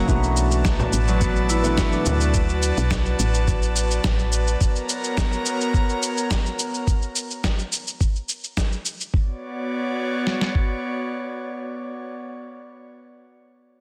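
An earthy organic downtempo piece in B minor at 106 BPM opens with a muted, intimate upright piano, ringing Celtic harp arpeggios, a round, woody FM bass and an up-front, breathy, chorused pad, with tape echo trailing the piano and harp and sidechain pumping on the piano, bass and pad. A dusty soul sampler-style kit with a thumpy kick sits up front beside a gritty electronic cabasa and snare, while a frame drum plays in the background; the piano stops at 2.4 s and the harp and bass by 4.7 s, leaving the airy pad to carry the harmony. The chords move from Bm7 to F#/B before settling on Bm at 9.1 s, with the mix held in light reverb and a dense, heavily limited master.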